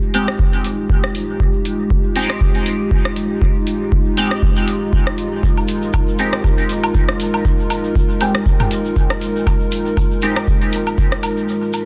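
Swung sixteenths in 4/4 drive this nocturnal, cavernous dub techno fragment, built on a deep, up-front electronic kick and a booming analog drum machine with metallic hats, rim clicks and a soft-clipped snare trailing dub echo; a grainy tube shaker and a layered, tape-warm electronic woodblock and toms, pumping and echoing, join around 5.4 s. A dark, detuned, wave-folded analog pad holds slow-attack Fm9 chords with chorus and sidechain pumping, while a juicy, resonant polysynth fires stabs through a filter sweep, phaser and dub echo. The digital ambience and dense, heavily limited master keep it close and heavy until the kick drops out at 11.5 s.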